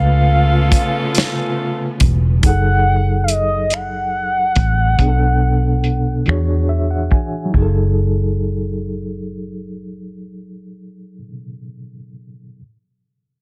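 A gliding, detuned portamento lead with chorus and slapback echo carries the melody for the first 6.7 seconds of this sultry, late-night slow R&B excerpt in 6/8 at 47 BPM in F# dorian, over a reedy electric piano with fast tremolo, a dark, foam-muted fingered bass, a soul drum kit that enters at 0.7 seconds with finger snaps and dark cymbals, and brief opening touches from a bowed string section and smooth jazz-style horn stabs, set in studio reverb with a filter sweep and a dense, heavily limited master.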